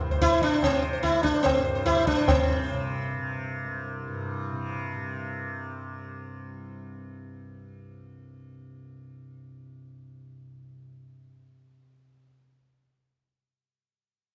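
Hindustani classical music in a serene, devotional mood at 146 BPM in 7/4, this brief excerpt cut from a longer piece gathers pace through its first 5.1 seconds as an up-front, plectrum-plucked sitar with buzzing sympathetic strings carries the melody until 6.0 seconds, low-tuned ringing tabla sound only until 2.4 seconds, and a mellow, softly plucked tanpura drone shimmers on alone to 12.1 seconds, all set in a wet recital-hall reverb.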